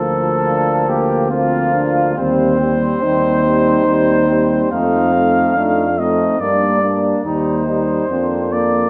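A brass quintet opens together on a noble chord, the dark trumpet carrying the melody up front with a light vibrato in a roomy, distant classical voicing. Behind it, the flugelhorn traces a warm second line with its own light vibrato, while the French horn adds soft-attacked, warm accompaniment. The clear euphonium sits back in the accompaniment, and the tuba anchors the low register with a gently vibrating bass. Moving in an unhurried triple metre with rubato phrasing, the harmony travels from Bb/D through Cm/Eb and F7 to Gm, returns briefly to Cm/Eb, and settles on Bb/F near 8.1 seconds. A generous concert hall reverb surrounds the ensemble, giving this fragment of a longer piece a spacious, dignified glow.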